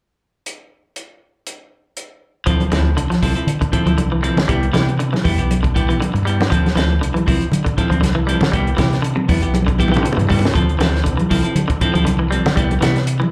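A lightly swung 4/4 afrobeat groove opens with a compact cocktail drum kit alone, its dark, rolled-off sound built on hi-hat, punchy kick and a high-tuned snare, before fingered electric bass, congas and two guitars join around 2.5 seconds for a hypnotic, intense vamp alternating Dm9 and Cmaj7. The round, prominent bass anchors the low end; a twangy, slightly broken-up guitar plays low arpeggios through spring reverb and slapback echo, while a clean semi-hollow guitar adds picked stabs with its own slapback. Damped, bright congas sit in the background, a drum fill arrives at 9.5 seconds, and the whole cut from a longer piece has the feel of a live gig heard through a club's PA.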